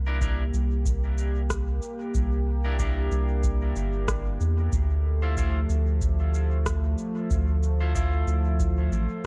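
A 4/4 pulse at 93 BPM sets the pace, with a light swing on the sixteenths, as an electronic kick drum thuds deep and tape-warm in the background while cabasa and rim click patter through a dub echo. This short ambient dub excerpt in D minor feels spacious and deep, moving from a C9 chord to a Dm9 at 4.7 seconds. Up front, a round analog bass sits low and sustained, its fast attack giving a slightly nasal, sine-like body. Behind it, a sawtooth-and-triangle pad with a sub octave holds mellow chords, its slow attack and long release softened by chorus. A clean, picked electric guitar adds bright stabs bathed in lush chorus and dub echo, while the dark production keeps reverb to a minimum.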